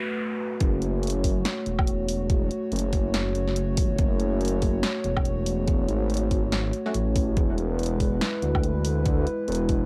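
Deep dubstep at 142 BPM in F# minor with a swung, half-time feel: a dark, chorused analog pad and a brief electronic noise sweep open a meditative, brooding excerpt before the drop at 0.6 seconds brings in a rumbling detuned saw bass up front, a deep electronic kick and a deep house kit of hi-hat, punchy snare and woodblock with cassette-tape grit, while a muted, mellow filtered dub chord stab with lush chorus and dub echo sounds once at 6.9 seconds, shortly before the chords move from F#m to E, all in a dry home-cassette recording.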